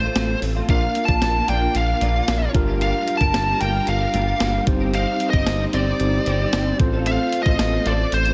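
Uplifting and glossy, this short excerpt of 1980s-style pop in a straight 4/4 sets a dark, distorted, bluesy lead guitar up front over a mellow sawtooth synth bass, a bright tine electric piano and a thumpy, sampler-style drum machine with snare, hi-hat and tambourine that enters at 0.2 seconds. In the background, a twangy, compressed twelve-string electric guitar picks a riff while a shimmering vintage string machine holds sustained violin chords through ensemble chorus. Light reverb surrounds the mix as the chords move from F/A through Bb, Gm7 and Cm/G before returning to F/A at 6.8 seconds.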